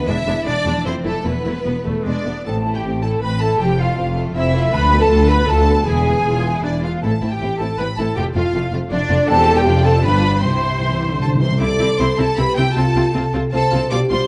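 Stormy and restless, this classical excerpt in a brisk 156 BPM waltz-time moves from A minor to C major at 9.3 s, with a clear, distant violin section carrying the melody over a lush second violin line, very quiet ringing harp arpeggios, an intense viola section, a warm cello section and a close, expressive double bass section, while an airy flute section adds a second line, hard-mallet timpani drum a dry fill at 10.4 s, and a mellow French horn section closes on sustained chords from 11.6 s in light reverb.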